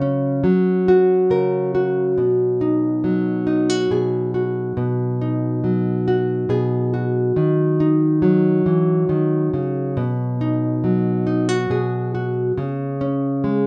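Haunting and intimate, this slow folk excerpt in a straight 6/8 features a lone fingerpicked nylon-string guitar, dark and full-bodied with a deep classical character, sitting up front in the mix. Its chords move from F#/C# through B, D#m and B again before settling on C#5 near 12.6 seconds, all bathed in a wet studio reverb, while the recording's content stops short of the highest treble above about 10.3 kHz.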